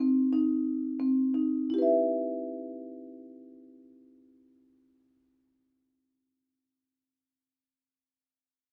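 Arpeggios on a warm, up-front marimba played with medium mallets open this brief excerpt of urgent yet pensive contemporary instrumental music, slowing down over the first 1.7 seconds before the harmony moves from C minor to E minor, the notes ringing in a moderate studio reverb until the marimba stops at 6.2 seconds.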